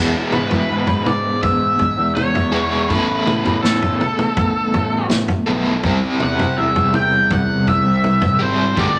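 A wet, large studio reverb surrounds this trippy, kaleidoscopic psychedelic rock excerpt in straight 4/4, where a bright, double-tracked overdriven guitar with tremolo sits up front on the riff, a round, dark fuzz bass pushes underneath, an octave-fuzz lead guitar with wah and distortion enters at 0.3 seconds alongside a vintage kit of punchy kick, snare and toms with a rolled-off top, all moving over E, Asus2 and C.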